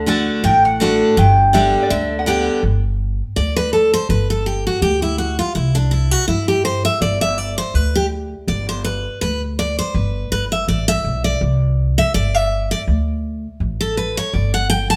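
A bright, full-bodied picked dreadnought guitar sits up front through this lively, rustic bluegrass excerpt in G major, moving at 164 BPM in 4/4 with a light swing on the eighths. It opens as accompaniment, with a woody, warm double-strung mandolin carrying the melody for the first couple of seconds. A metallic, nasal lap resonator guitar, played with fingerpicks and slide, adds a brief second line in the background. From 2.6 seconds the guitar takes over with a solo that runs to the end, over changes moving between G, C and D. Underneath, a dark, thumpy upright bass with gut strings is plucked throughout. The band sounds as if playing live in one room, with a moderate studio reverb.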